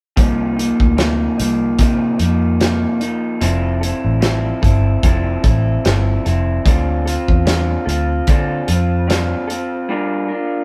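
A lightly reverberant sound puts a small band playing live in one room, with the guitar and drums pushed up front. This short indie pop and bedroom pop excerpt moves at an unhurried 74 BPM in 4/4 with a gentle swing on the sixteenths, its mood sunny and nostalgic. An electric guitar through a small old amp carries the accompaniment, its lo-fi tone slightly broken-up and compressed, with a warbly pitch drift that gives it a worn, wavering character. Beneath it, a vintage muted picked electric bass sounds dark and round, while a loose indie drum kit of hi-hat, tight kick and medium-tuned snare sits mid-forward with a small-room feel. The harmony drifts through Cm11, Fmaj7 and Dm7 before touching Gm7 at 9.9 seconds, after the bass has stopped at 9.3 seconds and the drums at 9.7 seconds, leaving the guitar to ring on until 10.6 seconds.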